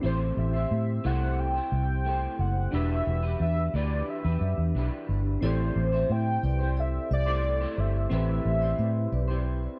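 A straight 4/4 pulse at 89 BPM carries this hazy, wistful stretch of indie and bedroom pop, cut from a longer piece and moving from Am7 to Em7 before returning to Am7. The vintage muted fingered electric bass sits up front, dark and round with a foam-muted thud. An electric guitar through a small old amp adds slightly broken-up, lo-fi picked accompaniment colored by ensemble chorus and warbly pitch drift, while soft electric-piano-like synth keys stay in the background, gentle and mellow, with a filter sweep, tremolo and a cassette tape character. Above them a velvety synth lead carries the melody from 0.1 s, smooth and sustained, with vibrato, lush chorus and tape echo. At 5.4 s, as the second section begins, a vibraphone with soft mallets enters as a quiet second line, metallic and airy with slow motor vibrato, subtle chorus and tape echo. The recording is dry and close, in a 1970s studio style with little reverb.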